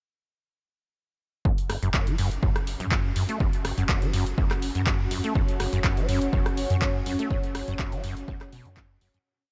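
A tape-warm, lightly reverberant mix gives this short acid house piece a raw, driving character, with the full groove arriving at 1.5 seconds. An up-front, punchy analog kick holds a steady four-on-the-floor pulse, while a drum machine re-recorded in a small room adds programmed closed and open hi-hats, handclaps and rim clicks in a slightly swung backbeat. A squelchy, resonant sawtooth acid bass, treated with overdrive, ensemble chorus, diffuse delay and sidechain pumping, plays a 16-step riff full of accents and slides. Beneath it, a round, deep analog bass sits in the background with a dotted rhythm. An ethereal, airy pad with a noise layer and built-in reverb drifts through slowly shifting chords, and at 5.4 seconds a smooth, detuned sawtooth pad joins with sustained chords and a held high note before the track fades out from 6.7 seconds.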